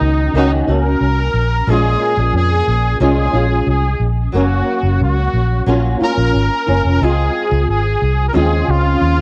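This short excerpt has the soft, homemade grain of a cassette recording, set in a small booth with a moderate, close ambience. It is sunny, nostalgic bedroom pop at an unhurried 90 BPM in a straight 4/4, moving through Ebm7, Bbm7, Gbmaj7 and Dbmaj7 across its 9.2 seconds. A bright, present trumpet carries the solo melody in a pop style with vibrato, sitting up front and dressed in ensemble chorus, plate reverb and tape echo. Beneath it, a fingerpicked flamenco guitar plays warm acoustic accompaniment, given a wavering, lo-fi character by chorus, a vibrato effect, cassette tape coloring and plate reverb. A vintage muted, fingered electric bass anchors the low end, its dark, round, foam-muted tone amped, punchy and placed up front. All three parts play together from the first second to the last.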